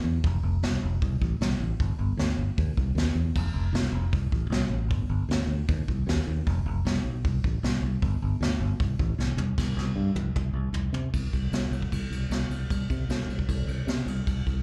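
Heard through a club PA with a touch of room reverb, this energetic, powerful hard rock excerpt opens on a bright, growly fingered electric bass that sits punchy and up front. A vintage brush drum kit joins at 0.2 s, sounding roomy and distant with dark cymbals, a tight kick and a rolled-off top across crash, ride, hi-hat, snare and toms. A drum fill from 9.2 s carries into a short new passage, and the music moves into a final section at 11.1 s.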